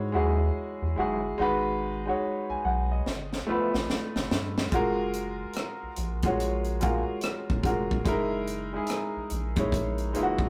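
A rough rehearsal-room sound with tube saturation and a modest small-room reverb frames this sultry, smooth neo-soul R&B excerpt at 72 BPM, its sixteenths swung. A bright baby grand piano sits up front with audible action noise, carrying chords from Emaj9 through G13 and F#maj9 to F#13 over a rubbery, hollow square-wave bass with a filter pluck. A dark, slightly broken-up electric guitar murmurs in the background from 0.2 seconds. A tight funk drum kit with a high-tuned snare and rim clicks enters at 3.1 seconds with a fill.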